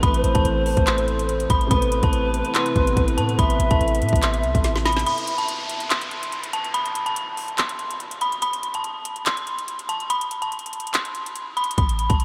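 Eerie and hard-hitting, this cut from a longer trap hip hop piece moves at 143 BPM in a half-time feel, sitting in A minor over an Amadd9 chord. A dark, detuned synth bell carries the melody up front with an inharmonic FM shimmer, chorus and analog delay, while a polished pan flute adds a second line with tongued chiff and vibrato. Underneath, a felt-muted upright piano murmurs in the background with audible action noise, a dark analog pad holds moody, wave-folded chords with a slow attack, and a clean, boomy 808-style bass supplies a deep sine low end. The trap drum kit stays up front throughout, pairing a hard-clipped kick and woody snare with metallic hats and handclaps, and a drum fill at 4.6 s leads into a break at 5.1 s where the flute, piano, pad and bass drop away and an electronic downlifter sinks beneath the bell and drums. The bass returns briefly at 11.8 s, and the whole mix is drenched in a huge, dreamy ambient reverb.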